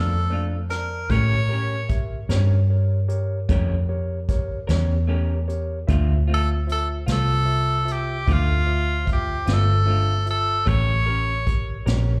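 Heard as a live club gig through the venue's PA, this short cut from a longer slow blues in 12/8 carries a smoky, mournful air, softened by club reverb. An edgy, forceful tenor saxophone takes the solo melody up front in a jazz style, its punchy tone touched with slapback echo. A bright, barky tine electric piano, heard through a combo amp, and a slightly broken-up electric guitar, picked through a small old amp with tremolo and slapback echo, sit lower in the mix as accompaniment. A dark, round, foam-muted electric bass anchors the bottom with a punchy, amped presence near the front. A vintage brush kit of hi-hat, kick and medium-tuned snare joins at 0.7 seconds, natural and rolled-off on top, while the harmony moves from Bbmaj7 through A7b9 and Dm7 before returning to A7b9.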